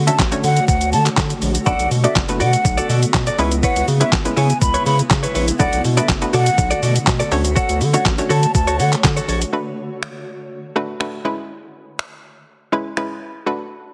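Dance-pop at 122 BPM in B dorian, this excerpt from a longer piece feels bittersweet yet energetic, opening in the middle of a drop that runs to 9.5 seconds over chords moving through Dmaj7, Bm7 and C#m7. A detuned 8-bit drum machine sits up front with a thumpy kick, medium-tuned snare, hi-hat, shaker, handclaps and finger snaps, while a round, deep analog bass and a blurred granular cloud pad in the background both pump to the sidechain. A breathy, mellow silver concert flute carries the melody with vibrato and a digital delay, and from 1.7 seconds a clean, direct-recorded electric guitar plays a picked riff with subtle chorus. A hollow, nasal square-wave pluck with chorus bounces through the accompaniment and, along with the drums, carries on into the closing section after the other parts drop away around 9.5 seconds. The mix has light reverb and a heavily compressed, radio-like sheen.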